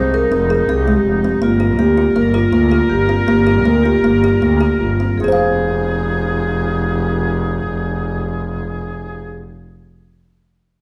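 A mellow kalimba stands out in this restless, hypnotic stretch of contemporary chamber music in 5/4, its soft fingertip plucks spinning woody, hollow-box arpeggios over the whole excerpt. A vibraphone played with soft mallets and its motor off carries a ringing, metallic second line. Beneath it, a close-miked woodwind section in classical style holds warm sustained chords with a gentle vibrato. A single bowed double bass anchors the bass with a focused tone and vibrato. The harmony moves from Fm7 to Gm7, and the pulse slows between 2.2 and 5.2 seconds before a new section returns to Fm7 at 5.2 seconds. A moderate recital-hall reverb and a dark, warm production wrap the ensemble in a warm space.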